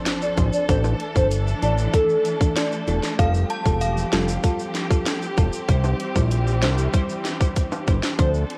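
A tight electronic drum kit with a sharp snare drives a straight 96 BPM dancehall groove, backed by band-limited tube shaker and timbales and a fat, saturated analog bass, in this bouncy, tough fragment cut from a longer piece, opening on a very quiet impact. A crisp wavetable chord stab and a lush string section with sidechain pumping carry the chords from Dm7 through Asus4 and Fadd9 to C, while a hollow, woody clarinet-like synth lead with chorus and delay sings the melody until 2.4 seconds, returning briefly at 8.2 seconds. An inharmonic FM chime takes a second line from 2.6 to 5.0 seconds, and a drum fill arrives at 7.6 seconds, all under light reverb and the warble of worn cassette tape.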